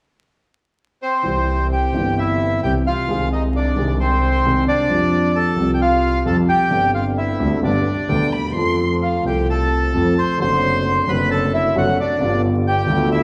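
Nostalgic and passionate, this tango moves at 132 BPM in 4/4 with a rubato feel, centered in C major and cut from a longer piece. The reedy, vintage-toned bandoneon carries the melody up front from 1.0 seconds, its band-limited sound ranging from C4 to C6. From 1.2 seconds a dark, woody upright piano with long sustain supplies the accompaniment, while a bowed double bass adds a smooth, even bass line with vibrato. Briefly, between 8.1 and 8.9 seconds, a distant violin enters with an expressive second line, bowed with vibrato and portamento. The harmony travels from C through Ab/C, Fsus2 and Gsus4 to G, then F, D7/F# and a closing G7, all set in a wet recital-hall reverb with a touch of vinyl crackle.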